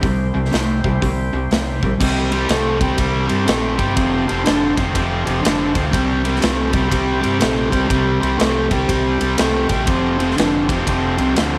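Gritty and driving, this short cut from a longer piece sits between blues rock power trio and southern rock, moving at 122 BPM in 4/4 with a swung eighth-note feel in C major, tuned slightly flat to A4 = 438 Hz. An overdriven electric guitar carries the riff up front, its picked, double-tracked tone sounding warm and overdriven in the low register. Beneath it, a deep dub fingered electric bass adds a dark, round, punchy foundation, while a big rock drum kit in a large room brings a punchy kick, a medium-tuned snare, hi-hat, and bright crash and ride cymbals. In the background, an overdriven tonewheel organ holds thick, full sustained chords through a slow rotary speaker. All four parts play from the start, with the harmony shifting between C and F, and light reverb with studio ambience surrounds the band.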